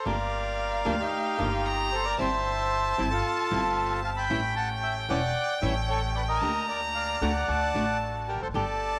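Rubato 4/4 at 113 BPM opens this dramatic, melancholic tango excerpt in G minor, where a dark, reedy bandoneon melody sits up front over a distant, focused bowed violin line with vibrato, fingerpicked flamenco guitar with audible finger squeak, thumpy, woody pizzicato upright bass and vintage, band-limited bandoneon stabs in the background, set in a small room with a wet spring reverb as the chords move from Gm7 through C/G and A7 to Gm/D and D.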